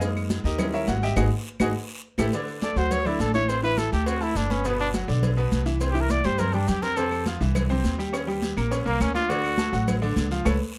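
A moderate small-room reverb gives this sunny, sophisticated Afro-Cuban jazz excerpt an intimate, lively space, cut from a longer piece and moving briskly at 207 BPM in a straight 4/4. A clear, smooth grand piano with a vintage tone and short sustain opens with a solo through 2.3 seconds, backed by a growly, woody upright bass played pizzicato on steel strings, both sitting up front. Beneath them, high-tuned congas with a thick skin, a round low-tuned cowbell heard from a distance, grainy maracas and a raspy, close guiro fill out the percussion, while woody, band-limited claves drop out after the opening and return at 7.1 seconds. A breathy trumpet with vibrato takes the melody from 2.6 seconds, playing a present, jazz-style solo up front over shifting harmonies from D and Am through G6 and Fmaj9 to a closing Dmaj7. Band accents punctuate the end of the piano intro and the final moments, and drum fills land before the trumpet's entry and again near the midpoint.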